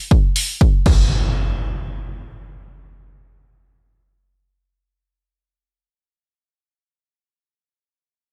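A punchy, tape-warm electronic kick drum sits up front at the start of this short fragment of joyful, feel-good filtered disco house, played in free time. From 0.4 seconds an analog drum machine adds crash cymbal and hi-hat at a lower level, with sidechain pumping on both the hats and the cymbals. The kick and drum machine both fall away by 1.0 second, and an up-front electronic impact takes over from 0.9 to 5.9 seconds, carrying the rest of the clip. Digital ambience surrounds the parts, giving the brief burst of drums and the lingering impact a processed, spacious setting.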